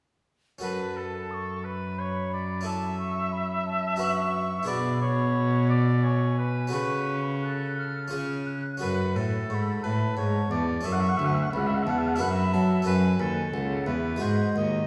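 Oboe, wooden flute, harpsichord and cello enter together at 0.6 s in this introspective, solemn baroque-style sonata movement in triple time, heard with rubato from further back in a reverberant recital hall. The distant, vibrato-laden oboe carries the melody while the pure, crisp-edged wooden flute sings a second line above it, and a close, dry, round harpsichord fills in the harmony. Beneath them a rich, up-front bowed cello with gut-string tone anchors the bass as the chords wander through the minor key, cut from a longer piece at 14.9 s.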